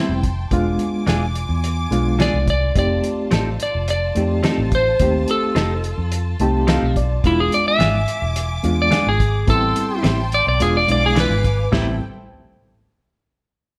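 A twangy lap steel slide solo leads from the start of this soulful, smoky soul blues excerpt in A minor at 107 BPM, sung out up front over a reedy electric piano with light overdrive and fast tremolo, a lush, woody bowed string section holding chords, and compressed stabs from a direct-recorded clean electric guitar. A round, foam-muted fingered bass enters at 0.1 s and a cloth-damped drum kit at 0.2 s, with a fat snare, tight kick and dark cymbals, while the electric piano adds a brief fill at 6.1 s. The band sounds like it is playing together in one large studio with moderate reverb, and the lap steel solo ends at 11.7 s as the piece moves into a new section.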